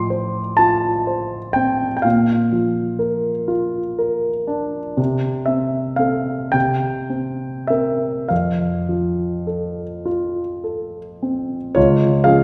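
Swaying in a lilting 6/8 with free rubato, this tender, dreamy romantic nocturne drifts at a slow, unhurried pace. A solo concert grand piano carries the whole passage from 0.0 to 12.4 seconds, its warm tone resting on a deep bass and notes of short sustain that reach from low in the keyboard up into the high treble. The instrument sits up front, yet a wet recital hall reverb surrounds it, as though heard from further back in the room. The harmony glides from F over A through Bb and a Cadd11 before settling on F, then turns unexpectedly to Db at 11.8 seconds as the opening section closes. Cut from a longer piece, it feels like a brief, intimate glimpse into a larger reverie.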